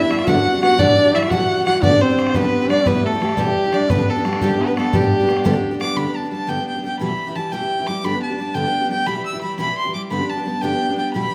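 Rollicking and bright, this Celtic jig excerpt moves at 116 BPM in 6/8 in G major, with an up-front fiddle carrying the melody in a rich, smooth voice with light vibrato over a bright, full-bodied picked steel-string acoustic guitar that shifts between G and E minor. A mellow duduk adds a second line with vibrato and scooped notes, while a boomy, distant bodhran supplies percussion, both dropping out by 5.9 seconds to leave fiddle and guitar alone for the repeated strain. Recital hall reverb gives the whole a spacious, wet sheen.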